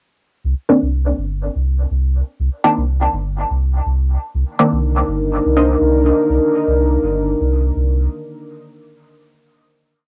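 Lightly reverberant and carrying the grainy color of a home cassette recording, this short dub techno piece feels deep and hypnotic, riding a gently swung groove over a single Cm9 chord. A round, sine-toned sub bass sits up front from 0.4 seconds, holding a sustained, dotted-rhythm line. Above it, muted, full-bodied sawtooth chord stabs with a filter pluck and short decay land sparsely, one shape moved in parallel, washed through phaser, tape coloring and dub echo. At 4.3 seconds a moody, detuned analog pad with a sub octave enters on a slow attack and holds mellow sustained chords under chorus. At 5.6 seconds a brief, quieter stab riff flickers through, its evolving, square-edged tone softened by analog chorus and trailed by echo.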